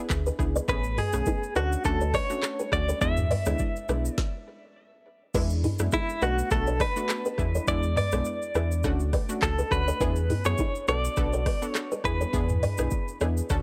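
A twangy, clean electric guitar with tremolo carries the romantic, sunny melody of this afrobeats clip cut from a longer piece, sitting up front over an overdriven afro-pop kit with a deep kick, woody snare and metallic hats, a full sine sub bass, a hollow, woody kalimba riff and a detuned analog pluck with chorus, with a brief stop from 4.2 to 5.3 seconds in a dry, gritty mix.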